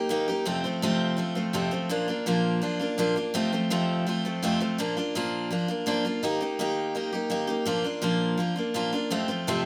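In a straight 4/4 feel, a lone picked steel-string acoustic guitar carries this short, nostalgic and heartfelt country passage, cut from a longer piece. The dreadnought sits up front with a bright, full-bodied tone and the sparkle of fresh strings, moving from F to Bb and later through Eb before settling back on F near 9.1 seconds. A moderate studio reverb gives the heartfelt playing a gentle sense of space.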